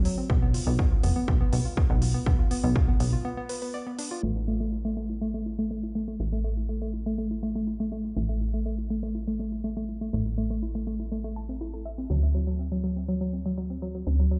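A woody, wave-folded pluck with chorus, dub echo and sidechain pumping spins dark arpeggios under a filter sweep in this hypnotic melodic techno excerpt in A minor at 122 BPM, riding a punchy, funky analog bass that also pumps, while a heavy, up-front kick drops out at 2.9 s and smooth, muffled hi-hats stop at 4.1 s around a brief break before the second section, the mix heard through a big sound system in a bare room with a large studio reverb and a dulled top end.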